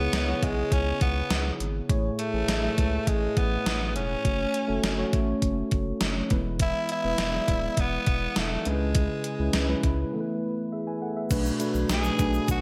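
A breathy, raspy tenor saxophone carries an uplifting, romantic melody over mellow tine electric piano with analog chorus, a deep saturated sub bass and a thumpy, overdriven 80s drum machine with gated reverb snare in this bright 1980s-style pop excerpt at 102 BPM in A major, moving from C#m7 through Amaj7, F#m and E to a break on Esus4 at 10.1 seconds before a very quiet grainy egg shaker enters at 11.3 seconds on Bm7.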